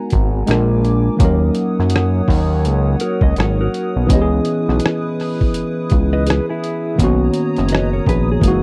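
A loose, swung sixteenth-note groove in 4/4 drives this sultry, introspective neo-soul and R&B excerpt, carried by a gritty, pitched-down boom bap drum kit with a thumpy kick, hi-hat and rim click sitting up front. Beneath it, a fat analog bass with a saturated, detuned sawtooth tone and a quick filter pluck anchors the low end. A worn, slightly out-of-tune tine electric piano, played through a combo amp, supplies the accompaniment, moving through A#7, D#m7, C#m9 and Bmaj9. Behind it, a hollow, flute-like pad with a slow attack and a soft chorus holds airy sustained chords in a high register, sitting quietly at the back of the mix. At 3.0 seconds a dark, fingered electric guitar with tremolo enters as a second line, and the whole piece has the dry, close sound of a 1970s studio.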